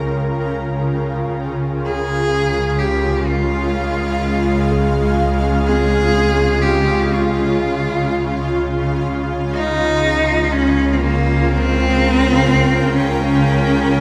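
In a straight 4/4 at a slow 62 BPM, this weightless, warm ambient passage in Db lydian, cut from a longer piece, rests on a bright, detuned pad of sustained chords with octave-up shimmer and a granular, ethereal texture, over a lush bowed double bass section holding a low Db. A rich solo cello carries the melody up front with light vibrato, bathed in shimmer reverb and diffuse delay, while a very quiet FM synth bell traces pure, decaying arpeggios through chorus and phaser. The harmony moves from a rootless Eb7 over Db to Db at 1.3 seconds and returns at 9.1 seconds, the whole ensemble set in a wet scoring-stage reverb.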